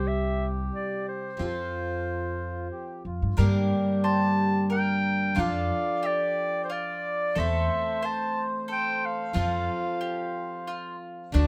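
Acoustic folk in 3/4 with a wistful, intimate mood, this short cut from a longer piece puts a warm, smooth-topped clarinet up front on the melody, played in a classical style. A reedy, mellow accordion with slow beating carries a second line. A bright, full-bodied picked steel-string guitar and a woody pizzicato upright bass, both up front, supply accompaniment and bass. At 3.4 s a double-strung bowl-back mandolin joins with picked arpeggios as the harmony turns minor, all set in a moderate studio reverb.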